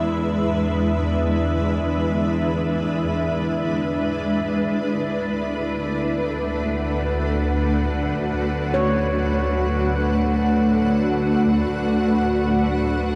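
Ambient in free time, warm and weightless, this short cut from a longer piece floats on a bright, up-front granular cloud pad whose blurred, detuned sustained chords drift from E7 to D6 at 4.7 seconds, while a clear chamber double bass section holds an earthy, bowed low line with light vibrato beneath it. At 8.7 seconds a mellow handpan rings briefly in the background, its soft fingertip arpeggios trailing into diffuse ambient delay until 9.9 seconds. The dark production sits in a huge, wet reverb with a 7.7-second tail.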